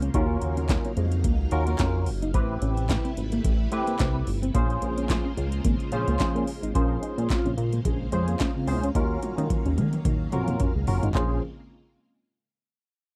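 A glossy, chorused synth bass with a plucky filter sits up front in this funky, slick slice of early-eighties boogie funk, alongside an electro analog drum machine with a deep kick, punchy snare, handclaps, metallic hats and toms. A barky tine electric piano through a combo amp carries the accompaniment, a dark, slightly broken-up electric guitar plays a lush-chorused riff, and a vintage string machine holds sustained chords through phaser and ensemble chorus. A mellow, round synth brass line with vibrato and filter sweeps enters at 5.1 seconds, in the middle of a band accent, and a drum fill arrives at 8.9 seconds, all captured in a dry, close studio sound.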